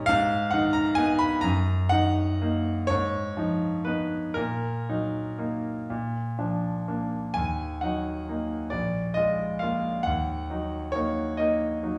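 Wistful and mournful, this romantic classical nocturne excerpt for solo piano unfolds in a slow, rubato 12/8, its brilliant, polished concert grand sounding up front with deep bass and short sustain across a span from Bb1 to Cb6, while a wet large-studio reverb and a sense of being heard from further back in the room surround the chords as they move from Abm through Ebm/Gb and Fm7b5/Ab to a Bb before settling on Ebm at 10.1 seconds.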